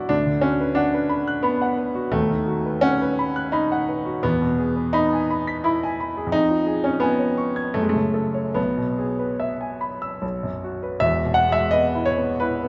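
A clear, smooth grand piano with a vintage, up-front tone and short sustain carries this romantic character piece alone, spanning E1 to B6 in a hopeful, passionate mood. It moves in a flexible, rubato three-four, winding through chords such as B7/D#, C#7/E# and F#m before settling onto E as a new section begins at 11.0 seconds. The playing sits in a wet concert-hall reverb with rolled-off highs, and the recording is cut from a longer piece, ending at 12.7 seconds.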